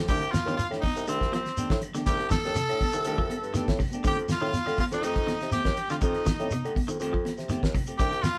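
A straight 4/4 afrobeat groove at 121 BPM in C dorian, with a dry, up-front 70s drum kit of fat snare and tight kick, grainy shekere, bright high-tuned congas in the background and faint woody claves, drives this hypnotic, funky excerpt from a longer piece, where a raspy, growling tenor saxophone carries the melody over a clear, vibrato-tinged bassoon bass line, a brilliant, distant trumpet second line, and two clean electric guitars picking stabs and arpeggios across Cm69 and F9 in a moderately reverberant room.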